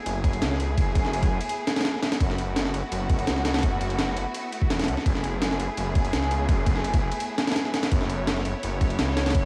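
A home cassette recording with vinyl crackle and a moderate small-room reverb gives this dark, atmospheric drum and bass excerpt a hazy, lived-in character. At 168 BPM in straight 4/4 and F# minor, it holds a single F#m11 chord, with a rich, smooth studio string section sustaining bowed ensemble chords with vibrato from the start, coloured by cassette tape. From 0.1 seconds a thick, menacing detuned saw bass sits up front, its beating sawtooth tone given fast attack, long sustain and tube saturation. Over it, a jungle sampler-style kit of thumpy kick, medium-tuned snare and ride cymbal sounds compressed, pitched up and gritty with overdrive, re-recorded in a large room and placed up front as the loudest part. The passage is cut from a longer piece and ends at 9.5 seconds.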